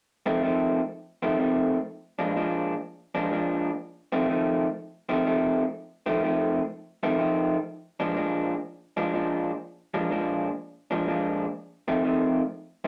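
A picked electric guitar through a small old amp, slightly broken-up, lo-fi, compressed and up front, plays a gritty, laid-back swung blues solo from 0.3 to 12.9 s over F7 and Bb7 changes, set in a wet small room with the rough, saturated feel of a rehearsal-room recording cut from a longer piece.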